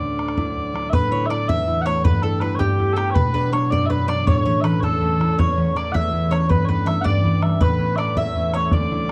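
A dry, close 1970s-style studio sound with light reverb frames this cheerful, rollicking Celtic jig at 108 BPM in 6/8, where sweet, vibrato-laden small bagpipes carry the melody up front over a ringing, fingerpicked concert harp and an open, boomy bodhran that enters at 0.2 seconds, joined at 0.9 seconds by a round, double-strung picked mandolin and a very quiet, reedy, boxy accordion sharing the second line, in a snippet cut from a longer piece.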